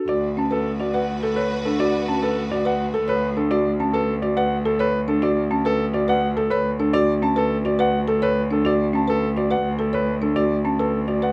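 A concert grand piano carries the melody over woody, round marimba arpeggios from the very start of this bright, propulsive minimalist classical piece in D major, moving at 105 BPM in a straight 3/4. A clear, smooth solo cello holds a bowed D2 bass throughout, while a lush violin section adds sustained chords with vibrato only from 0.1 to 3.3 seconds, all resting on a D6 harmony. The sound is close and detailed with little reverb, placing the natural-toned piano and the cello up front.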